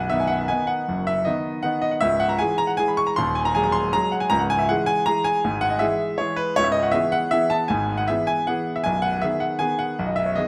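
Swaying in three with a flexible, rubato pulse, this brief piece of a classical piano waltz unfolds over about 10.5 seconds, cut from a longer work. A solo grand piano carries everything, its tone clear and polished, sitting up front in an intimate, present way that lets the audible noise of the instrument's action come through. The playing spans from a deep B0 up to C#6, giving the dance both a grounded low end and a bright upper line. The harmony drifts from a major opening into shadowed minor colours, lending a graceful lilt to the playful mood. A wet recital-hall reverb with a 1.5-second decay surrounds the piano, adding a sense of space around its close, detailed sound.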